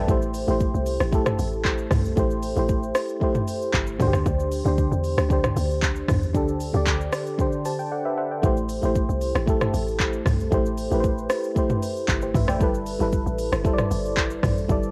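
A mellow, warbling FM electric piano with tremolo and a round, dark log drum bass open this soulful, deep amapiano passage at 115 BPM in A minor, with a deep house kit of deep kick, smooth hats, handclaps, rim click, shaker and toms joining up front at 0.1 seconds. The piano carries a vintage cassette-tape colour as the chords move from Am7 to D7sus4 and back. The piano plays a fill from 7.4 seconds while the drums drop out briefly between 7.9 and 8.4 seconds, all in a dry, intimate home recording cut from a longer piece.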